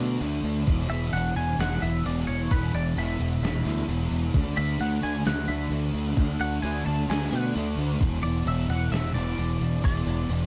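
Wistful and hazy, this 131 BPM shoegaze and dream pop rock excerpt pairs a bright, twangy twelve-string electric guitar melody, treated with analog chorus and digital delay, with a thick, dark fuzz guitar riff under ensemble chorus, a growling overdriven fingered bass up front, a thumpy gated 80s drum machine with a gated-reverb snare and crash, and a faint jingly tambourine, all in a dark, lightly reverberant production moving between D5 and E5 chords.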